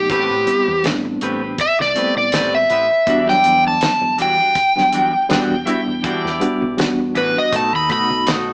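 Smoky and mournful, this short slice of straight-eighth soul blues moves at 81 BPM in E minor, with a light sixteenth-note swing under a 4/4 pulse. An overdriven slide guitar sits up front and carries the melody as a solo from the start, its dark, gritty voice ranging from G4 up to B5 and stopping at 8.3 seconds. Beneath it, a worn, reedy electric piano plays accompaniment through its built-in speakers with a fast tremolo, slightly out of tune, while a clear horn section holds sustained chords with light vibrato and octave doubling in a vintage pop style. A clean, dark electric guitar adds picked stabs, a round, punchy fingered bass anchors the low end, and a dry, mid-forward, damped 70s drum kit with a fat snare and tight kick plays hi-hat, kick and snare. The harmony moves from Am9 to Em9 at 3.1 seconds and reaches B7 at 7.5 seconds, heard as a band playing live in a stone room with moderate reverb and a small-speaker character.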